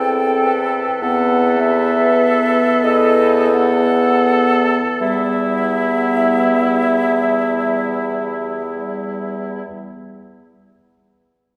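A hollow, airy silver flute with vibrato carries the melody in this elegiac, melancholic classical movement for wind quintet, a slow, rubato piece in E minor and 12/8 at about 26-37 BPM, cut from a longer work. Beneath it a warm oboe sings a second line, a dark clarinet and a mellow, soft-attacked French horn fill out the accompaniment, and a vintage-toned bassoon with light vibrato sits on a low E2 in the bass, all five sounding from 0.0 to 9.6 s. The tempo slows through the first 5.0 s as the harmony moves from Am over E to B5 over E before settling on E minor, heard from further back in a wet concert hall with a long reverb.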